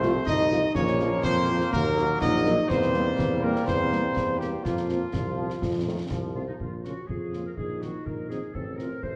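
Resolute and martial, this short cut from a military-style wind band march in Bb minor moves at 123 BPM in a straight 2/4, with a mellow, distant trumpet section carrying the melody over a clear, soft-attacked woodwind line and a warm euphonium with vibrato in the background, dark, punchy French horns quietly filling the accompaniment, bright trombones holding sustained chords until 6.6 seconds, a warm, roomy tuba on the bass, and close, dry concert snare, bass drum and dark clash cymbals, all bathed in wet scoring-stage reverb and the worn, warbly pitch drift of old cassette tape.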